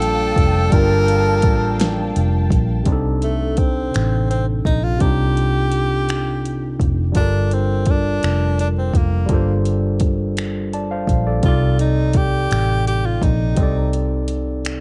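A slow, straight six-eight groove at 56 BPM sets a sultry, yearning R&B mood in C dorian, carried by a soft-kicked, fat-snared electronic drum kit with finger snaps and metallic hats and a dark, round, foam-muted electric bass sitting up front. A barky, lightly overdriven tine electric piano supplies the accompaniment, while lush bowed strings and a mellow, octave-doubled horn section add sustained chords and stabs in the opening moments before dropping out by 2.8 seconds. The bright, close-miked tenor saxophone, with its vibrato and soft attack, carries the melody and turns into a jazz-style solo from 2.9 seconds over alternating Gm9 and Cm69 chords, the sax, piano, strings and horns carrying a cassette-tape tinge in a small, homey room.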